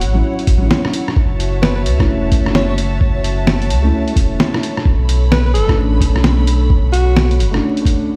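A shuffling future garage groove swings its sixteenths in 4/4, with a lo-fi sampler-style kit of hi-hat, rim click and a fat, muffled snare sitting up front, joined at 0.5 seconds by a thumpy, compressed electronic kick. Underneath, a round sine sub bass with tube saturation holds the low end, while a felt-muted upright piano adds a soft, boxy accompaniment roughened by vintage 12-bit sampler grit and digital delay, both pumping against the kick. A chamber string section bowed sul tasto with light vibrato sustains intimate chords above, moving from a rootless Dmaj9 through F#m7 to Bm9. At 1.6 seconds a clear alto saxophone enters with a jazz-style solo line, its subtone and scooped notes trailed by digital delay. The mood is ghostly and wistful, framed by stone room reverb and vinyl crackle, as if played on a big sound system in a bare room, and this short excerpt is cut from a longer piece.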